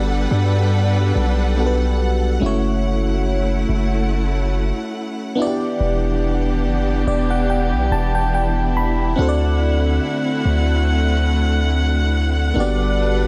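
A deep, mellow 808-style bass sits up front, holding long sine tones beneath a glassy, bell-like FM electric piano with chorus and a lush, woody bowed string section in this longing, sensual contemporary R&B excerpt, where the piano adds a fill from 6.6 to 9.2 seconds over chords moving from Gmaj7 through F#m7, Em7 and D7 in a small room.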